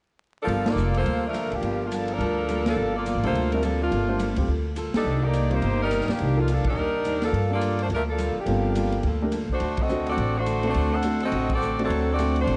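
A brisk swing at 210 BPM in 4/4 drives this short, dramatic big band cut in G minor, with the eighth notes lightly swung and the full band hitting sharp accents at points such as 0.6, 4.9 and 11.5 seconds. Up front, a bright saxophone section carries the melody with vibrato and a full ensemble blend, while a woody, dark pizzicato upright bass sits close beside it. The drum kit, airy and hall-like with a punchy kick and medium-tuned snare, keeps time on hi-hat and ride. In the background, a picked steel-string acoustic guitar adds quiet accompaniment, and a concert grand piano with audible action noise and deep bass makes a brief appearance near the start before returning for good from 3.2 seconds. The harmony moves through Gm9, Cm9 and back to Gm9 before landing on D7, all under light reverb and a faint vinyl crackle that gives the recording a dusky, aged sheen.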